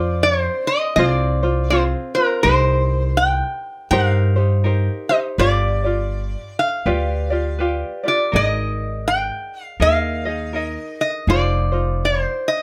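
A metal-body resonator slide guitar, a tenor ukulele and an upright bass all start together in this sunny, languid Hawaiian excerpt in C minor, moving at an easy 82 BPM in 4/4 with a gentle swing on the eighth notes. The resonator guitar carries the melody up front, its bright, nasal, metallic slide tone picked with fingerpicks and given a slapback echo. Beneath it, the fingerpicked tenor ukulele adds a light accompaniment, while the pizzicato upright bass on steel strings supplies a woody, growly, thumpy low end. The harmony moves from Fm through Cm7 and G7 to Absus2 before settling on Fm7 near the end. Close, detailed microphones and light reverb keep the sound intimate, and the bass drops out at 12.2 seconds, just before the guitar and ukulele finish at 12.6 seconds.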